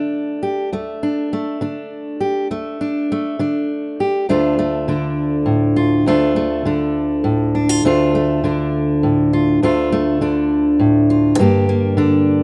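Bittersweet and yearning, this short folk fragment in a straight 6/8 features a lone fingerpicked steel-string acoustic guitar, warm and sitting up front across its full 12.4 seconds. The opening rests on a D5 before the second section arrives at 4.3 seconds on D minor, shifting to G minor near the close. Studio reverb gives the guitar a sense of space, though the overall mix keeps the rough character of a home demo.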